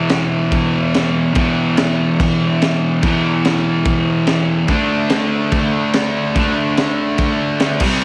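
Gritty small-room garage rock with a menacing swagger, this clip from a longer piece sets a bright, double-tracked fuzz guitar riff up front over power chords moving from E5 to D5 at 4.7 seconds, driven by a crunchy acoustic breakbeat kit with a punchy kick, high-tuned snare and dark, rolled-off cymbals that enters at 0.1 seconds.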